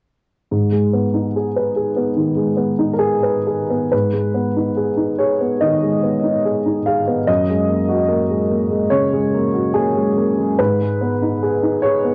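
A solo upright piano enters at 0.5 seconds, its tone dark, woody and slightly detuned, set up front in a small room with moderate reverb. This is a reflective, intimate piece of neoclassical minimalist piano in 4/4, played with a rubato feel and tuned a touch low to A4 = 439 Hz. After an opening passage, the music moves into a longer second section at 3.9 seconds, where the harmony turns from a minor chord to a colored major chord and then back again. The long sustain lets each chord ring into the room. The home cassette recording gives the piano a mellow, tape-softened character, and the clip, cut from a longer piece, ends at 12.1 seconds.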